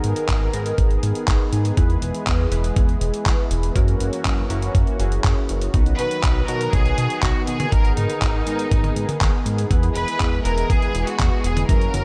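A straight 4/4 pulse at 121 BPM drives this nostalgic, melodramatic italo disco excerpt, cut from a longer piece. A compressed, gritty sampler-style kit of handclaps, hi-hat and toms runs throughout, joined at 0.3 s by a thumpy electronic kick that sits forward in the mix. Beneath it, a chorused synth bass built from pulse and sawtooth waves moves with a glossy, evolving, mellow tone, while a dark, retro polysynth adds sustained stabs shaped by a filter sweep. A lush, thick unison pad of detuned sawtooths holds slow-attack chords with a nasal, bright edge, cycling through G#madd9, E, F#7 and B. At 6.0 s a focused symphonic violin section takes the melody, bowed with vibrato and carried on tape echo, all inside a generous digital ambience.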